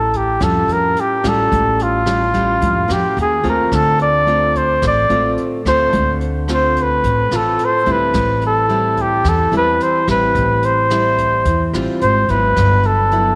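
A warm flugelhorn sits up front with the solo melody, its soft attack, vibrato and scooped notes giving this romantic, breezy bossa nova excerpt a jazz-style lyricism. Fingerpicked classical nylon-string guitar and woody pizzicato upright bass accompany it through chords such as Aaug7, Dm7 and Am7, settling on Gmaj13 near the close. Quietly underneath, a brushed drum kit adds hi-hat, rim click and a boomy kick, all set in a moderate echo chamber reverb.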